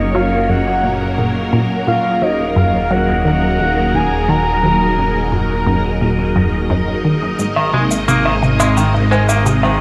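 A swirling, phased vintage string machine holds sustained chords over a fat, saturated analog bass in this luminous, expansive slice of ambient, sequencer-driven space music, while a juicy, squelchy blip pluck plays its riff, a round, octave-layered synth lead with vibrato sings a brief melody until 5.3 s, and a very quiet pulsing gated texture hovers beneath; at 7.4 s electronic cabasa and woodblock arrive, and from 7.6 s a bright, clean semi-hollow electric guitar picks delayed arpeggios, the whole set inside a huge reverb wash with cassette-tape grain.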